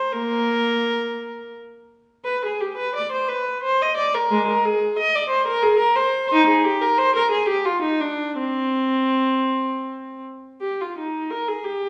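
This classical, baroque-style suite movement for unaccompanied viola is serene and dance-like, moving in 3/4 at a flexible rubato between 79 and 94 BPM in C minor, tuned to A4 = 443 Hz. A single bowed viola plays alone for the full 11.9 seconds, in period style with a reedy gut-string tone and light vibrato, ranging from Ab3 to Eb5. The wet reverb of a recital hall surrounds the player, who is heard from further back in the room, in this short fragment of a longer piece.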